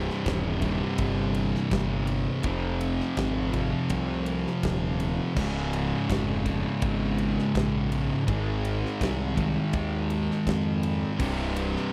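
Sludgy and ominous, this short cut from a longer stoner and doom metal piece crawls along at 82 BPM in a straight 4/4, centred on C phrygian. Three fuzz guitars grind through the riff together from the start to 11.9 seconds: one bright, double-tracked and compressed in the background, and two thick, warm ones, one of them set back in the mix. Up front, an overdriven, fuzzy picked electric bass plays direct and amped, digging down as low as C1. A big acoustic rock kit joins at 0.1 seconds with a punchy kick, medium-tuned snare, and bright crash and ride cymbals. The harmony moves through Cm, Fm, Db and Ab before landing on a C5 power chord at 11.2 seconds. The sound is dry and close, with a small room ambience in the manner of a 1970s studio.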